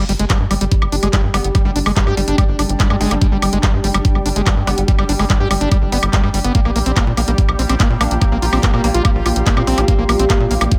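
A screaming, squelchy acid line with distortion and digital delay drives this hypnotic, alien psychedelic trance excerpt at 144 BPM, riding over a tight, punchy sequencer bass with tube saturation, an up-front knocking electronic kick, a drum kit of bright hats, handclaps and woodblock, a bubbling stepped-filter texture holding sustained chords, a very quiet metallic wobble bass from 1.3 seconds, and a blurred granular cloud pad drifting in the background from 1.0 seconds, with the chords moving from G5 to Bb5 at 6.5 seconds.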